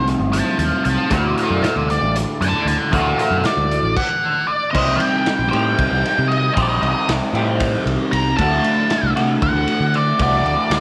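In a straight 7/8 counted in eighths at 231 BPM, this hypnotic, trippy psychedelic rock fragment swings between Cm and D chords, with a raw garage drum kit playing a punchy kick, a medium-tuned snare, hi-hat, ride and crash in a bright stone room, saturated and gritty with a rolled-off top. Up front, an octave-fuzz lead guitar solos through wah, distortion and tape echo until a stop at 4.0 seconds, over a slightly broken-up, flanged riff from an electric guitar through a small old amp and a round, fingered electric bass. Underneath, a very quiet, tense bowed-like drone with vibrato and a sawtooth, ring-modulated edge drops out at 4.8 seconds, while soft-handed, close and dry congas ring briefly in the opening seconds, all set in a light studio reverb.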